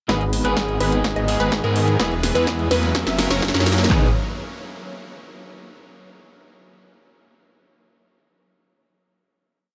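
Festival progressive house with an emotional, euphoric lift, this short piece is a single build-up that resolves onto a final chord at 3.9 seconds. The huge, lush supersaw chords carry the riff in dotted-rhythm open voicings, sitting in the background under a subtle chorus, a filter sweep and dub echo. A bright unison pluck doubles those chords in arpeggios. An electric guitar at the edge of break-up adds picked dotted-rhythm chords in drop2 voicings. Beneath them a thick, saturated detuned saw bass stays up front, following the chord rhythm, and the bass, guitar, pluck and supersaws all pump against the sidechain. The big-room drum kit drives the build with a punchy, overdriven four-on-the-floor kick, claps and floor toms in a fill, while metallic hats and a punchy snare keep the backbeat. A very quiet riser enters at 1.6 seconds to carry the transition into the closing chord.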